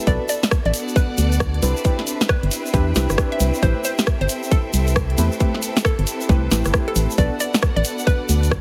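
This late-night, bouncy two-step garage excerpt opens with a silky string machine pumping softly in the background, deep mellow chord stabs that warble with chorus and delay, and a lush, bright studio string section shimmering with vibrato. At 0.1 seconds the groove arrives: a tight, up-front electronic kick, a garage kit with a cracking snare, rim clicks and hats, and a grainy tube shaker, all swung at 135 BPM in A dorian. Underneath sits a dark, organ-like FM bass with a hollow, percussive bite, prominent in the mix. A detuned square-wave pluck carries the melody, its vintage, wave-folded tone colored by chorus and echoing delay. The harmony moves from Bm7 to Cmaj7 and Am7, returning to Bm7 at 7.2 seconds. The sound is heavily compressed with a radio-like squeeze and only a light touch of reverb.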